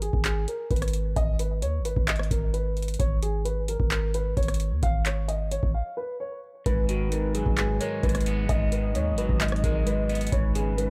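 This eerie, dark trap cut-out opens in a half-time G# minor groove at 131 BPM, with a mellow, boxy concert grand piano carrying the melody through digital delay over a deep, boomy 808-style bass and a booming analog drum machine of deep kick, metallic hi-hats, handclaps and rim clicks. At 6.7 seconds the harmony settles on G#m7 as a twangy, slightly broken-up electric guitar joins as accompaniment with subtle chorus, while a velvety sawtooth synth lead with vibrato, chorus and delay sits in the background as a second line. The dry mix keeps the tape-tinged drums and the bass up front.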